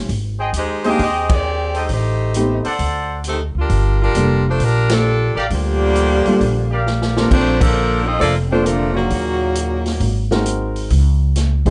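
A short club-reverb glow and a rounded, soft-topped sound frame this sultry, dramatic big band swing excerpt in G minor at 133 BPM, where a woody, growly upright bass and a natural baby grand piano play throughout beneath a swinging drum kit with a boomy kick and medium-tuned snare. A bright saxophone section carries the vibrato-laden melody up front from 0.6 seconds, while a mellow, distant trumpet section punches out stabs and a loose trombone section with light vibrato adds a second line from 5.5 seconds. The full band hits accents along the way, and a drum fill ending at 7.3 seconds ushers in a new section before the horns fall away and the harmony dissolves into an unchorded close as piano, bass and drums carry on.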